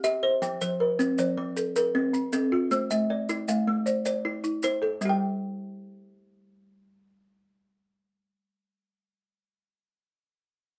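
Light reverb frames this short, rippling cut of southern African traditional music in 12/8, where an up-front kalimba, bright and airy with a woody thumbnail pluck and a hollow-box tone, and a dry, rustic folk marimba of hardwood bars under medium mallets both spin warm arpeggios in an mbira-style interlocking cycle over F and Am before reaching Gsus2 at 5.0 seconds, while grainy, mellow maracas sit close and dry until they stop at 5.2 seconds.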